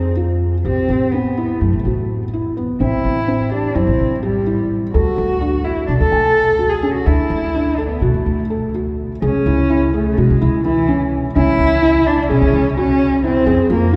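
Drenched in a cathedral's five-second reverb, this urgent, hypnotic fragment of contemporary chamber music in C# phrygian moves in 9/8 at 253 eighth-note beats per minute, with a dark, woody bowed cello carrying the melody with vibrato over soft, thick-felted upright piano arpeggios full of audible action noise and a pizzicato upright bass with steel strings sitting up front.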